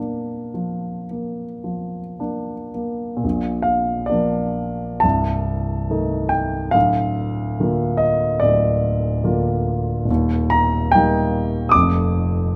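Classical romantic nocturne for solo piano, cut from a longer piece, unfolding in a mournful, melancholic mood with a rubato feel in 4/4. A warm, up-front grand piano carries the whole 12.6 seconds alone, ranging from the deep bass down at C1 to Eb6 above, with light reverb and tuning set slightly high at A4 = 445 Hz. A brief opening passage gives way at 3.2 seconds to a new section, where a diminished chord darkens the harmony before it moves through Bb/D toward Eb.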